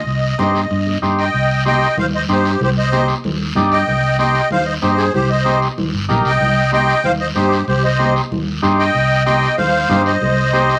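A reedy, shimmering musette accordion opens this fiery excerpt of cumbia, carrying the melody in C minor at a driving 189 BPM in a straight 4/4. Almost at once a round, punchy fingered electric bass joins up front, with bright, high-tuned congas sitting distant in the background and a raspy, close guiro scraping along. By 0.4 seconds a vintage overdriven combo organ adds buzzy accompaniment with a light vibrato. After a brief opening passage the music moves into its second section at 1.3 seconds, staying anchored on C minor. The accordion sounds dry and close-miked while a moderate studio reverb and a layer of vinyl crackle lend the recording an aged character.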